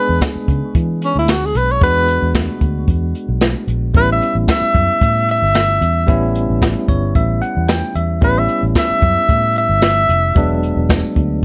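A breathy tenor saxophone leads this swaggering, laid-back straight-eighth soul blues, its up-front solo line full of vibrato, scooped notes and a smooth top, until it drops out at 10.6 seconds. Beneath it, a barky, bell-like tine electric piano comps with a clean, direct sound and steps forward with a bright fill between 6.6 and 8.2 seconds. A vintage fingered electric bass, amped, foam-muted and round, anchors the low end with a dark tone. The jazz brush drum kit sits up front in a studio room, pairing a boomy kick and medium-tuned snare with hi-hat and tambourine under a rolled-off top. The harmony moves from E7 to A7 and back to E7, and the dry sound of this excerpt, cut from a longer piece, keeps the group intimate.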